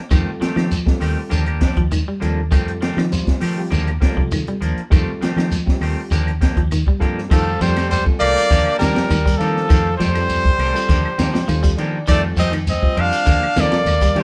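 Afrobeat at 100 BPM in F mixolydian, this hypnotic, funky clip cycles between F9 and Ebmaj9 over a dark, punchy-kicked cocktail drum kit, a round foam-muted fingered bass, grainy distant shekere and very quiet woody claves, while a twangy guitar at the edge of break-up arpeggiates in the background, a second picked guitar adds stabs, and a gritty overdriven reed electric piano with fast tremolo comps. At 7.3 s a bright, forceful trumpet with scooped notes takes the melody over a clear tenor saxophone second line, and the electric piano plays a fill at 10.9 s, all captured as a band playing live in one room with light reverb.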